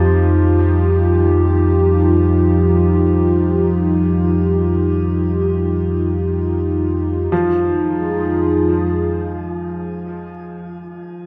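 This dark ambient drone in F minor opens with three parts sounding together: a rumbling low drone spanning F2 to F3, a moody analog pad holding sustained chords between Eb4 and Ab4, and a worn yet brilliant concert grand piano tracing arpeggios on F3. The mood is ominous and the time is free, with the harmony resting on Fsus2 before darkening to F minor at 7.3 seconds. The drone, built from detuned, wave-folded triangle and sawtooth tones with slow attack and long release, sits up front with its own reverb. The pad blends detuned square, sawtooth and triangle waves with a sub octave and ring modulation, colored by chorus and shimmer reverb. The piano sits lower in level, its bright tone carried by a diffuse ambient delay and shimmer reverb inside a cathedral space with a 5.1-second decay. The drone stops at 10.3 seconds and the pad soon after, leaving the piano alone until 11.3 seconds in this dark, cut-off fragment of a longer piece.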